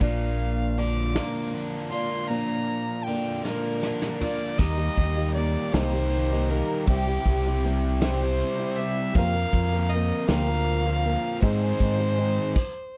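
A warm, bowed fiddle carries the melody from the very start, its light vibrato and focused, boxy tone set over a slow folk rock and heartland rock groove in 6/8 at 53 BPM, with a nostalgic, open-road mood. Beneath it, a picked twelve-string acoustic guitar adds shimmering, octave-doubled accompaniment with a dark parlour character, while a double-tracked overdriven electric guitar plays a biting riff. A deep, round fingered electric bass sits up front in the mix, and a soft brush drum kit with a tight kick and medium-tuned snare sounds roomy and distant yet prominent. The harmony moves from Bb to Eb at 4.6 seconds, then through C, Fsus4 and Ab, with a drum fill leading into that change. The recording is dry, with little reverb, and this cut from a longer piece closes on a brief stop at 12.6 seconds.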